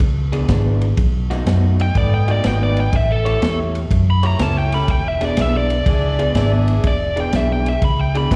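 A muted, round electric bass and a crunchy breakbeat kit open this short cut from an electric blues shuffle in E mixolydian, swinging at 123 BPM with a soulful, swaggering strut. The drums sound saturated and gritty, with a punchy kick, a medium-tuned snare and dark, rolled-off ride cymbal, while the foam-muted bass sits up front with an amped, dark tone. At 0.3 seconds a slightly broken-up guitar through a small old amp joins with a lo-fi, compressed riff carrying slapback echo, and a biting, overdriven lead guitar enters at 1.8 seconds, picking a bright solo high in its range. A warm saxophone section adds soft-attack jazz stabs with vibrato, dressed in slapback echo and analog delay, sitting low in the mix. The harmony moves through E7, B7 and A7 before returning to E7, and the whole performance comes across like a live gig heard through a venue's PA, bathed in recital-hall reverb.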